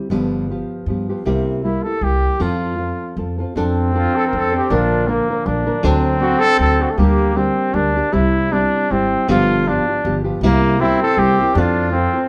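A thumb-plucked nylon-string guitar opens this romantic, festive mariachi piece in F major at 158 BPM, its classical tone sitting up front over a woody, dark pizzicato upright bass in a swung 3/4. At 1.6 seconds a mellow trumpet takes the melody with light vibrato, a soft attack and a smooth top in a classical style. From 3.6 seconds a second trumpet adds its own line beneath it, the band playing live together in a large studio with moderate reverb in this excerpt from a longer piece.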